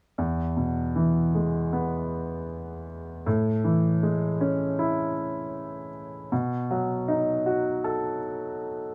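A close, polished sound with a moderate booth ambience frames this brief excerpt of heartfelt, tender pop at 78 BPM in E major. A clear concert grand piano sits up front as the accompaniment from 0.2 to 8.9 seconds, its deep bass and short sustain giving the chords a present, intimate quality. The harmony moves from E to Amaj7 at 3.3 seconds and on to B7 at 6.3 seconds, which leaves the phrase hanging as if more is to come.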